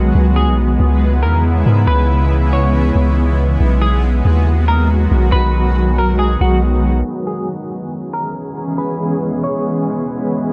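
An echo-heavy mix with a low-pass softness opens this melancholic, ethereal cloud-rap hip hop fragment at 139 BPM in a half-time feel, set in C# minor as C#m7 gives way to B6 and returns. A cloudy, blurred granular pad holds sustained chords up front with its own built-in reverb. A deep, mellow 808-style bass sits beneath it until 7.0 s, while a dark, clean semi-hollow electric guitar carries the melody from 0.4 s, coloured by analog chorus and dub echo.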